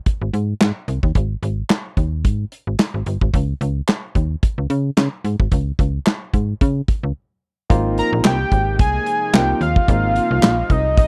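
A dry, close drum kit opens this feel-good early-eighties boogie funk excerpt at 110 BPM in Ab major, its hi-hat, tight kick and medium-tuned snare sounding dark and smooth, sitting up front over a lightly swung 16th-note feel in 4/4. A slap-like FM bass joins almost at once, snappy and digital with a metallic attack, moving between G1 and Db3, and a hollow group handclap adds a human, live-room touch. After a short break at 7.2 seconds, the groove opens at 7.7 seconds onto an Ab69 chord. There, a barky tine electric piano, lightly overdriven through a combo amp with subtle chorus, plays accompaniment, while a very quiet brassy analog pad holds detuned sawtooth chords. At 8.0 seconds a fat analog lead carries the melody between Eb5 and Bb5, mellow and forward with vibrato and slapback echo. The overall sound is smooth and close, with little reverb, like a 1970s-style studio session.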